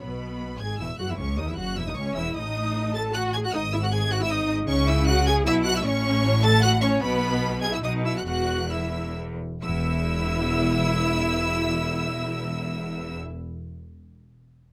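In a straight triple metre, this quick, graceful and cheerful classical-period excerpt for string orchestra carries a focused, vibrato-laden first violin melody high above a lush second violin line, an expressive viola accompaniment with portamento, an intense cello section and a clear, closely miked double bass, captured dry and detailed, with the pulse slowing between 6.4 and 9.6 seconds before a brief contrasting section begins at 9.6 seconds.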